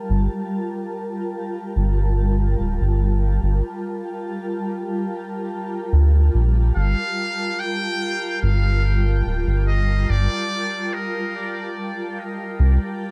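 A dark, lightly reverberant small-room sound frames this meditative, deep ambient dub fragment on a single Gm7 chord, where a blurred, evolving granular cloud pad holds sustained chords, a round analog bass sits up front with a detuned tone, and a buzzy, distant trumpet with a metal mute plays a solo melody with light vibrato and dub echo from 6.8 to 11.8 seconds.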